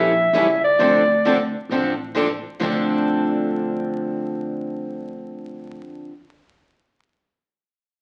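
A swung 4/4 pulse at 132 BPM drives this short cut from a longer piece of acoustic string swing in D minor, fiery and virtuosic in mood. A breathy clarinet, mellow and up front with vibrato and a soft subtone attack, carries the melody for only the first 1.5 seconds. Two picked steel-string acoustic guitars with a bright, boxy parlour tone supply the accompaniment through to 6.1 seconds, one placed up front. Underneath, a plucked upright bass with gut strings gives a woody, thumpy low end until 5.8 seconds. The harmony moves from A7 to Dm7, and the whole passage sits in a wet studio reverb on a very old 78 rpm record, with vinyl crackle and a muffled top end that stops short of 11 kHz.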